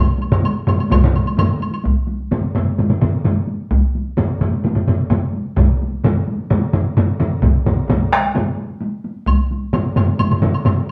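A powerful, ceremonial Japanese taiko ensemble piece at 129 BPM in straight 4/4 opens with a woody, close, dry woodblock and two taiko ensembles, one struck with heavy sticks and sounding compressed and saturated, the other played with hard sticks and carrying a vintage, band-limited, up-front tone. Solo taiko drums join at 0.3 s with hard sticks, sounding distant as if in a large room, and a second up-front solo taiko part with heavy sticks enters at 0.9 s and stops at 9.4 s, while the woodblock returns near the end. The band plays live in one room under a wet studio reverb, in this cut from a longer piece.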